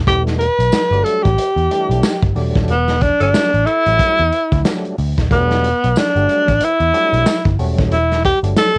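A breathy, whispered tenor saxophone sits up front with scooped notes and vibrato, carrying the melody over a hypnotic funk groove of swung sixteenths, dark foam-muted picked bass and a crunchy, saturated breakbeat kit with a tight kick. A lightly overdriven tonewheel organ adds percussive stabs through chorus vibrato and a slow rotary speaker, a jingly tambourine joins in the background at 0.7 seconds, and a growling second tenor saxophone slips in briefly from 3.2 to 3.9 seconds during a band accent. The home cassette recording is dry, giving the saxophones, organ and drums a tape character in this short cut from a longer piece.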